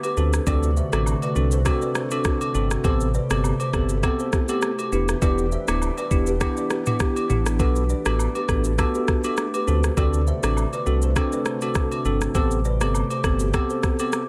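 A dry, close-sounding mix frames this mellow, sultry afrobeats clip at 101 BPM in A dorian, with a loosely swung groove cycling through Am9, Em7, Bm7 and D7. An up-front electronic drum kit with a knocking kick, rim click, shaker and toms sits over a deep, full sine-and-triangle sub bass with an added octave, while agogo bells and woodblock add acoustic, live-room colour. A woody, hollow kalimba riff rings through digital delay, a bell-like tine electric piano plays clean accompaniment through analog chorus, and a glassy FM pad holds ethereal, slow-attack chords in the background with ensemble chorus, built-in reverb and sidechain pumping.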